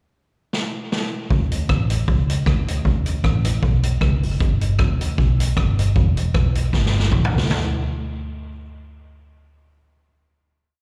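A swung ska beat at 155 BPM with a side-stick backbeat drives this short, upbeat and joyful whole piece: a boomy, mid-forward street-band drum kit with dub echo opens with a fill at 0.5 seconds, a dark, foam-muted vintage electric bass walks in with chromatic approach notes at 1.3 seconds, and after one more drum fill the kit stops at 7.6 seconds so the bass holds the final note, heard as a live gig through the venue's PA in a recital-hall space.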